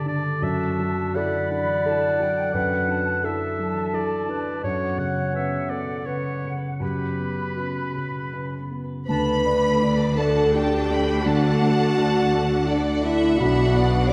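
In a rubato 3/4 that hovers between 78 and 87 BPM, this cinematic film-score passage feels uplifting and moving. A dark, mellow grand piano with deep bass carries the accompaniment, while a ringing, fingerpicked concert harp spins arpeggios in the background. Alongside them, a clear oboe with light vibrato, a distant, roomy clarinet with a soft attack and a pure, tongued flute section each add a second line, and the oboe drops out at 8.7 seconds. At 9.1 seconds the music settles into D major as the strings and brass arrive: rich cellos and focused double basses anchor the bass, expressive violas with portamento fill in the accompaniment, a mellow French horn section holds sustained chords, and an intense, lush violin section traces a high second line. From 9.8 seconds a second violin section, rich, smooth and even with vibrato, takes the melody as the harmony moves from D to Bm, wrapped in a wet scoring-stage reverb.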